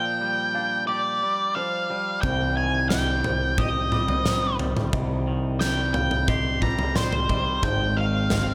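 Heard in a small room with light reverb, this brooding, cathartic post-rock excerpt at 89 BPM in C minor opens with an up-front, dark octave-fuzz lead guitar carrying the melody through distortion and tape echo over clean, twangy electric guitar arpeggios and a mellow felt-muted upright piano playing arpeggios in the background, both touched with tape echo, until at 2.2 s a growling, overdriven picked bass and a big rock drum kit with a fat snare and punchy kick arrive as the harmony moves from Gm7/Bb to Cmadd9 and on to Ab at 7.6 s.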